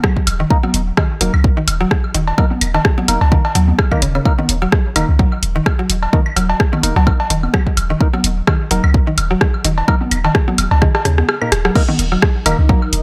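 An overdriven, layered kick sits up front and drives this sparse, clinical minimal techno cut from a longer piece, with a light swing on the sixteenths. A tape-warm analog drum machine adds crash cymbal, hi-hat and rim click, while claves, woodblock, congas and cowbell, re-recorded in a large room and treated with delay, fill out the percussion. A deep, sine-based sub bass with a pitch-drop attack and tube saturation pumps against the kick. A woody, round and bright FM pluck carries the riff through subtle chorus and dub echo, and a hollow, nasal organ stab with chorus and delay sits lower in the mix under a filter sweep. During a drum fill, the kick drops out at 11.3 seconds, the drop arrives at 11.8 seconds, and a cloudy, blurred granular pad drifts in at 12.2 seconds, all set in a digital ambience.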